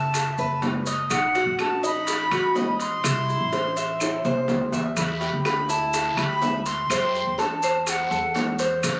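Sultry and danceable, this short Cuban son and guajira passage sets an airy, reedy concert flute melody over picked, metallic double strings on the tres, some octave-doubled, and a thumpy pizzicato upright bass with gut strings. Distant bongos struck with hard hands, ringing metal-shell timbales, dry woody claves and grainy maracas drive the groove, with a drum fill at 4.0 s and a raspy, band-limited guiro slipping in at 5.0 s. The harmony moves from Asus2 through B7, C and Em to F#dim, all captured on a phone inside a club with plate reverb around it.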